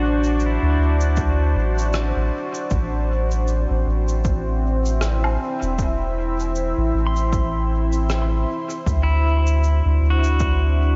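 Swung sixteenths in 4/4 drive this hazy, spacious ambient dub excerpt: shaker, rim click and woodblock in a big room with dub echo enter at 0.2 s, and an overdriven, punchy, layered electronic kick joins at 1.2 s. A round, mellow sub bass sits up front with tube saturation beneath a moody, detuned sawtooth pad that holds sustained chords moving from D7 to Am and back to D7, thickened by chorus and ring modulation. Over this, a clean, compressed pedal steel guitar plays fingerpicked slide arpeggios with volume swells through analog delay, the whole dreamy mix soaked in a huge reverb.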